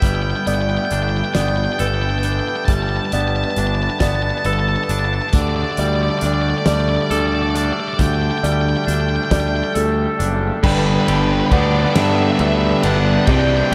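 Soaring and euphoric, this post-rock excerpt moves at a slow 45 BPM in a straight 6/8, centered in G major and bathed in a dreamy, reverb-soaked cathedral space. A dark, fuzzy lead guitar carries the melody through diffuse ambient delay, while a reedy, breathing pedal harmonium holds sustained chords in the background. Twangy clean electric guitar arpeggios ring through spring reverb and echo, joined by a soft, felt-muted upright piano whose intimate arpeggios carry audible action noise. Up front, a round, overdriven fuzz bass anchors the low end, and a loose indie drum kit with a fat snare and tight kick plays until 13.5 seconds. The harmony shifts from Gadd9 to Dsus4, and at 10.6 seconds it resolves to G as a bright cranked stack guitar and a compressed fuzz guitar enter together with a riff.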